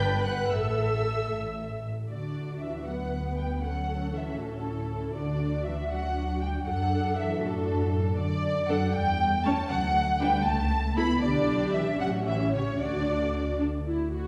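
In a straight 6/8 at 78 BPM counted in dotted quarters, this quick classical-period movement for string orchestra in D major drives forward with a dramatic, stormy mood, cut from a longer piece and heard from further back in a wet scoring-stage reverb. The first violins carry the melody, reaching as high as G6 with a focused, smooth-topped vibrato, while the second violins play a distant, even second line and the violas fill in a lush, expressive accompaniment with soft attacks. Beneath them, dark, woody cellos and up-front double basses anchor the bass through a cadence that moves from A7 to a closing D at 12.8 seconds, with the violas and basses ringing on just past 14 seconds.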